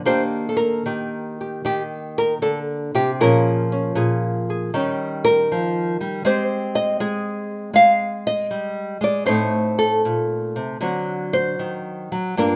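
Playful and sophisticated, this short cut from a longer solo jazz piece features a lone nylon-string guitar, fingerpicked and heard from start to finish across about 12.6 seconds. The guitar has a dark, woody character with the dulled tone of old strings, and its small body sits up front in the mix. A swung, rubato feel lets the phrasing stretch and breathe in 4/4, reaching from low bass notes up into the upper register. The harmony moves through rich jazz changes, starting on Ebmaj7, passing through Bbm7 and Eb7 to Abmaj7, then turning through a diminished chord toward D7. A moderate reverb suggests a large studio, giving the intimate instrument a gentle sense of space.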